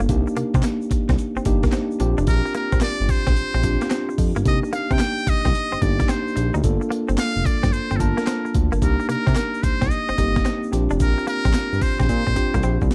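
A gritty, overdriven breakbeat kit with a thumpy kick, handclaps and tambourine opens this bouncy, confident new jack swing cut at 110 BPM in C dorian, sounding from the first moment alongside a smooth sawtooth synth bass, a mellow tine electric piano, a twangy, picked clean guitar riff with analog chorus and a very quiet, grainy egg shaker. At 2.3 seconds a buzzy trumpet with metal mute takes the jazz-style solo melody with light vibrato and slapback echo, floating over swung sixteenths and Cm9, Bb69 and Gm9 chords. A drum fill at 12.1 seconds closes this portion of a longer piece, whose dark, dry production keeps the sampler-style drums up front.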